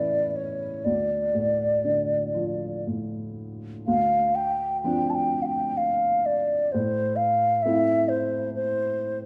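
Longing and haunting, this fragment of a Celtic slow air in rubato triple time sets an airy, hollow wooden flute, its melody shaded with vibrato and soft attacks, up front over a dark, woody upright piano accompaniment, the two held in a moderate recital hall reverb as the harmony moves from A to D minor, then to Dm7 at 3.9 seconds and to A minor at 6.7 seconds.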